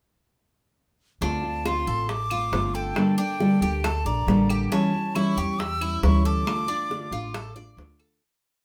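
A moderate studio reverb gives this short, complete piece a rounded room sound, with the nylon-string guitar and upright bass sitting up front. It is a nostalgic, sultry Cuban son in the guajira style, moving at 137 BPM in a straight 4/4 in D minor, with the harmony passing through Dm7, Gmadd9 and A7 before settling on Dm. The full-bodied, deep classical nylon-string guitar is fingerpicked and strummed with muted slaps, while the dark, woody pizzicato upright bass plays a tumbao that anticipates the chords. Above them, the bright, metallic Cuban tres picks an arpeggiated guajeo on its double strings, and the airy silver concert flute carries a motif-based melody of tongued call phrases with vibrato and lifted highs. Tight, high-tuned bongos keep steady eighths from 1.2 seconds, and vintage, band-limited claves join in the background at 1.7 seconds with a two-bar time line. The whole piece fades out from 6.5 seconds to its close at 8.2 seconds.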